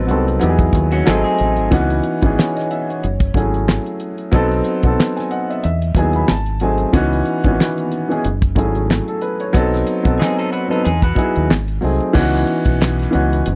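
A 92 BPM groove in 4/4 with a 16th-note swing drives this smooth, late-night neo-soul R&B excerpt in C# minor, where a damped 70s drum kit with a fat snare, tight kick, dark cymbals and handclaps sits up front beside a woody upright piano that voices rich chords like C#m11 and F#m9 and plays a fill from 5.0 to 6.9 s, a round, punchy dub bass holds the low end, and a slightly broken-up, lo-fi electric guitar adds brief second lines, all captured as a dry, close 1970s-style studio recording in a small room.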